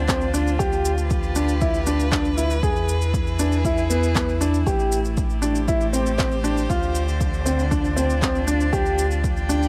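Set in a digital ambience, this cinematic, moving excerpt of piano and strings electronica places an intimate, woody, slightly detuned upright piano riff with delay up front, over a close, vibrato-laden string quartet holding sustained chords and a round sine sub bass, both pumping with sidechain, while a punchy, overdriven electronic kick and tape-warm handclaps and shaker, re-recorded in a small room, carry a straight 4/4 pulse through chords moving from Dm7 through G7/D, E and Am7 and back to Dm7.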